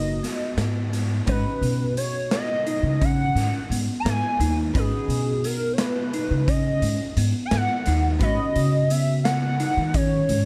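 A hollow, vibrato-laden square lead with chorus and phaser carries the melody over a dark, double-tracked archtop guitar in the background, bell-like electric piano arpeggios with tape echo and a woody pizzicato upright bass, with a gritty, saturated garage drum kit entering at 0.2 seconds in a pumping stone room, driving this brooding progressive instrumental in 5/8 at 173 BPM in G# minor, moving from G#m7 to Bsus2 at 8.2 seconds in a short cut from a longer piece with a dark, lightly reverberant production.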